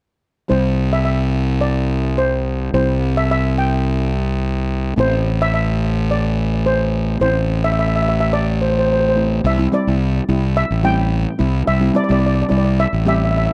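Bouncy and festive, this calypso excerpt at 107 BPM in C major pairs a mellow, shimmering lead steel pan carrying the melody through analog delay with a second steel pan on double seconds comping in the background, all over an up-front, round, fuzz-overdriven fingered electric bass, moving from C to Am and back to C at 9.4 seconds in a dark production with moderate studio reverb.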